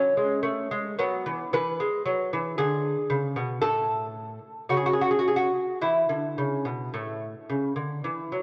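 A slow, rubato pulse in 4/4 at around 52-58 BPM carries this flowing, serene baroque-style classical dance in A major, heard as a short fragment of a longer piece. A solo fingerpicked lute with gut strings, doubled courses and some octave-doubled strings sits up front, delicate and ranging from A2 to B4, moving from E69 through E7 at 1.5 seconds to a settling A chord at 3.6 seconds. The home cassette recording lends the lute a tape-worn character, set within a lush, wet hall reverb that lingers generously around each note.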